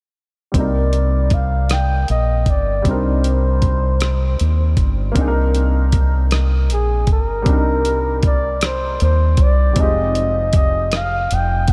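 At 0.5 s, a worn concert grand piano with analog chorus, a dark, round fingered electric bass and a gritty, compressed sampler-style drum kit with a thumpy kick, hi-hat and rim click open this slow, yearning late-night R&B excerpt in 6/8 at 52 BPM in C minor. From 0.6 s, a breathy, mellow flugelhorn carries a jazz-style solo melody with vibrato, scooped notes and a smooth top, while the bass and drums sit up front and the present, short-sustained piano stays lower in the mix. The harmony moves from Cm9 to Fm9 at 9.8 s, all within a light studio reverb.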